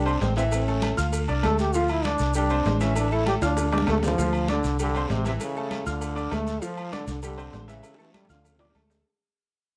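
A moderate studio reverb surrounds this fiery, passionate salsa fragment, cut from a longer piece, where a breathy, whispered trombone carries the melody up front with light vibrato, scooped notes and a soft attack over a clear, woody, slightly detuned upright piano and a dark, round, foam-muted electric bass. Behind them sit high-tuned congas with thick skin, tight cowbell and bongos, ringing agogo bells and timbales and a raspy, band-limited guiro, while grainy maracas sound close and dry. Drum fills arrive at 3.3 and 7.8 seconds, and the music fades out from 4.2 seconds onward.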